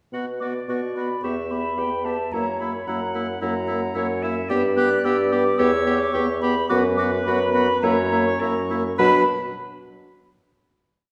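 Heard from further back in a wet recital hall, this short, complete wind quintet movement in the classical style has an urgent, restless feel over uneven beats. A pure, distant concert flute enters at 0.4 s with an expressive melody, its vibrato and crisp attack floating above a close-miked oboe that adds light vibrato and repeated notes. A bright clarinet weaves a smooth-topped counter-melody, a clear French horn holds repeated notes and sustained chords, and a mellow bassoon, up front, marks the bass on the beats until everyone settles on a final chord at 9.0 s.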